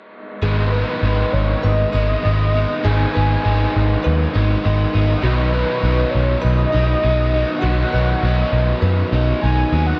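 A dry, dark mix carries this hazy, dreamy rock excerpt at 100 BPM in 4/4, where an up-front, round and punchy foam-muted picked bass anchors a compressed overdriven guitar riff bathed in lush chorus, a lo-fi garage guitar playing its own riff in the background with reverse reverb, and quiet direct-recorded clean arpeggios touched with subtle chorus and tape echo, all beneath a velvety, detuned synth lead melody with soft attack, vibrato, chorus and tape echo, moving from G#m to B at 5.2 seconds.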